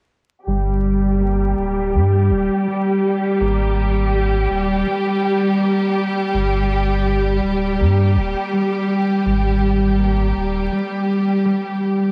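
A lo-fi haze of cassette tape, vinyl crackle and light reverb wraps this dark, melancholic trip hop excerpt at 82 BPM in G minor, where a lush, bowed string section holds clear, vibrato-laden chords and a ringing concert harp picks arpeggios through 12-bit sampler grit and analog delay, both under filter sweeps, while a round, deep sub bass sits up front until 10.7 seconds beneath the shift between Gm and Ab5.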